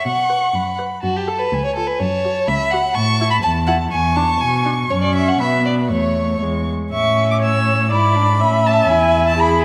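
Lively and cheerful, this quick classical-period movement for string quartet moves at 123 BPM in 2/4 with a rubato feel, set in A major and tuned to A4 = 441 Hz. The first violin carries the melody high in its register, its rich, expressive tone colored by vibrato and portamento and set at a distance. The second violin plays a supporting line across a broader range, sounding focused and smooth on top, and sits up front. The viola enters at 0.3 s with soft-attacked accompaniment, close and expressive with vibrato and gliding portamento. The cello holds the bass with a gentle, airy sul tasto bow and light vibrato, intimate and up front. A moderate scoring-stage reverb surrounds the ensemble, and a second section begins at 6.9 s, moving between A and E harmonies before this excerpt from a longer piece cuts off.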